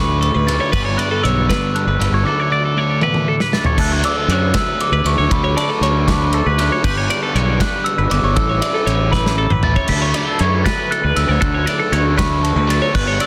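Intricate and wistful, this short math rock and midwest emo passage in 6/8 at 79 BPM in D major sets a mellow, bell-like glockenspiel melody over bright twelve-string electric guitar arpeggios soaked in phaser and tape echo, a second twangy twelve-string chording under ensemble chorus until 5.3 seconds, a double-tracked overdriven guitar riff, a dark, round fuzz bass up front, and a loose indie drum kit with a tight kick in a pumping small room whose fills land at 3.0 and 9.1 seconds as the chords drift from Dmaj7 and Gmaj7 through G and A7 back home.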